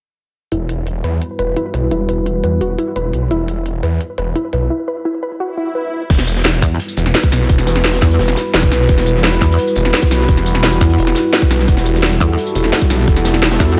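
Aggressive and tense, this dark technical drum and bass cut opens on an Emadd9 chord, with a crisp, up-front drum and bass kit of cracking snare, hi-hat, crash and tambourine driving over a snarling distorted saw bass that growls low with overdrive and sidechain pumping. A warbly, dusty pluck with a nasal, lo-fi character plays arpeggios through chorus and delay until 5.9 seconds, while a deep, moody analog pad enters at 1.2 seconds with sustained chords carrying phaser, chorus and a gritty vintage sampler texture. A brief electronic swell leads into the drop at 6.1 seconds, where a tight, tape-warm electronic kick lands and a crunchy breakbeat kit sits in the background, its saturated small-room snare and hats filtered and rolled off on top. Shortly after, a heavy pulsing wobble bass joins on a single low E with chorus, pushing up front alongside the distorted saw bass. The whole mix is soaked in a lush hall reverb that lends a dreamy haze to the menace, and the passage is cut from a longer piece.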